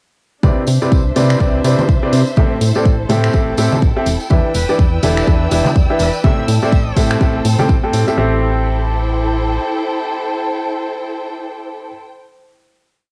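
Soulful and bittersweet, this short piano house piece in A minor moves at 124 BPM with a swung sixteenth feel. A woody upright piano riff in dotted-rhythm chords and an octave-jumping FM bass pump against a punchy four-on-the-floor kick, with bright congas and tambourine, finger snaps, open hats and a lush studio string section of slowly shifting chords. From 4.3 s a background violin section holds a high note, and at 4.5 s an airy, dreamy lead with chorus adds short answering phrases. The groove ends at 8.2 s, and the tape-echoed piano and strings sustain a final chord until 12.1 s while the bass fades out by 9.6 s, all set in a small room with cassette-tape coloring.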